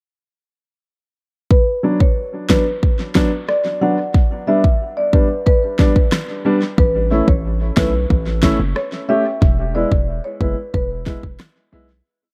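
A hypnotic, bouncy dancehall piece in B minor at 91 BPM opens at 1.5 s with a woody, band-limited marimba hook soaked in tape echo, set over an up-front electronic pop drum kit of kick, rim click and snare, whose punchy, syncopated kick is answered by a fat snare. A dark, mellow baby grand piano soon adds off-beat chords in close voicing, also through tape echo, as the harmony moves from Bm through G and A to E. At 6.8 s a heavy, sine-based 808-style bass with a fast attack and a noise layer drops in with syncopated low notes, and the echo-heavy mix fades out from 9.4 s.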